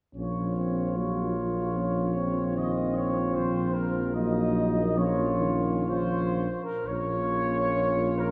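A soft-edged euphonium with vibrato opens this melancholic, yearning brass-band hymn, joined at 0.2 s by a tight, mellow trumpet section carrying the melody with light vibrato and a vintage tint. A smooth flugelhorn adds a second line, a dark second euphonium sits in the background with the first, and an up-front yet roomy tuba holds a single low note, all moving with rubato freedom in a slow 4/4. The ensemble is heard from further back in a wet scoring stage with a 1.8 s reverb and lossy compression artefacts, and this fragment of a longer piece reaches a new section at 6.9 s before ending at 8.3 s.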